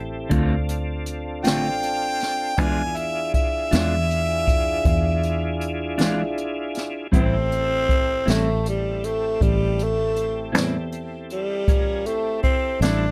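Slow blues in A minor at 53 BPM in 12/8, smoky and brooding, with a smooth tonewheel organ holding chords through a slow rotary speaker and chorus vibrato, a round, foam-muted fingered bass, a dark clean electric guitar with harmonic tremolo, and a brushed drum kit with a high-tuned snare and punchy kick, while a close-miked harmonica with light vibrato, scooped notes and overdrive solos from 1.4 to 5.6 seconds before a raspy, growling tenor saxophone takes the melody at 7.1 seconds, all captured with little reverb.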